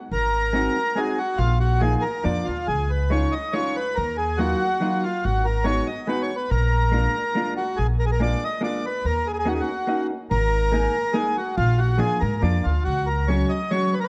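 A bittersweet, nostalgic musette waltz in three, carried by a reedy, full accordion melody that sits up front from 0.1 s. A woody, plucked upright bass with steel strings anchors the low end until 13.4 s, while a clean, compressed hollow-body electric jazz guitar adds picked accompaniment from 0.5 s. Light reverb and a dusky, mellow production frame this brief fragment of a longer piece, which moves through richly colored, suspended and seventh chords.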